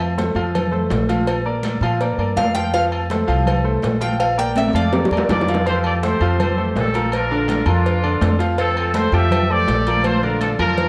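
Heard through worn, warbling cassette tape with a warbly pitch drift and a moderate large-studio reverb, this festive, danceable salsa fragment moves at 164 BPM in F major. A brilliant, up-front grand piano and a woody pizzicato upright bass drive the groove over background congas, round cowbell and bongos, and ringing timbales and agogo bells, with drum fills at 4.6 and 10.0 seconds. A metallic, picked Cuban tres carries the melody from 2.4 seconds, then a punchy, tight trumpet section with light vibrato takes over at 5.3 seconds as the chords move between F, Bb and Fadd9.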